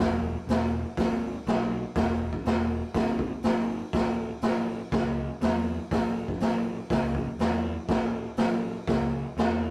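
A raw garage drum kit and a fuzz-toned picked electric bass start together, setting a swaggering, straight 4/4 groove in a short garage rock excerpt cut from a longer piece. Up front in a small room, the drums sound gritty and saturated, with a boomy kick, medium-tuned snare and hi-hat, their top end rolled off, while the dark, round, punchy bass growls through overdrive in its low register. Light reverb and tube saturation give the whole a rough rehearsal-room feel, and the drums stop at 9.5 seconds just before the bass ends at 9.7 seconds.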